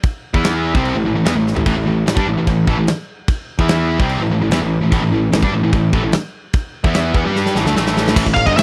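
This short heavy metal excerpt opens on a big rock drum kit, up front in a big room, with a medium-tuned snare, tight kick, toms, crash and china cymbal driving a straight 148 BPM in 4/4 in A minor. At 0.3 seconds two distorted guitars join on the riff, a double-tracked high-gain guitar and a tight distorted guitar sitting in the background, and a very quiet, compressed distorted guitar follows at 0.4 seconds, all bright and picked, moving between E5 and Am chords. A growly, fuzz-drenched picked bass sits up front beneath them, giving the epic, aggressive groove its weight. The drums break into fills at 1.5 seconds and again toward the end of the passage. Just before the cut, a dark, nasal lead guitar with a parked wah enters up front for a brief melodic phrase. The sound is dry and close, in a 1970s studio style with little reverb.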